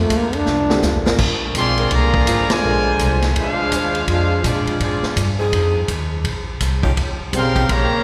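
A warm trombone, with a soft attack and vibrato, opens this joyful, energetic big band swing passage in Bb major at 166 BPM, over a pizzicato upright bass with a woody tone and a vintage drum kit with a punchy kick and a rolled-off top. A drum fill runs beneath the trombone solo, and a worn, slightly detuned upright piano surfaces very briefly and very quietly. From 1.1 s a close-miked saxophone section holds sustained chords, and by 1.6 s the trumpet section takes the melody, clear, vibrato-rich and up front, while a mellow trombone section plays a tight second line beneath it. The band hits an accent at 2.5 s, and later the harmony moves through Fm7, Bbsus2 and Eb9 as the saxophones and then the brass return near the end of this excerpt. The whole performance sits in the long, wet reverb of a church or concert hall, giving the swung eighths a spacious ring.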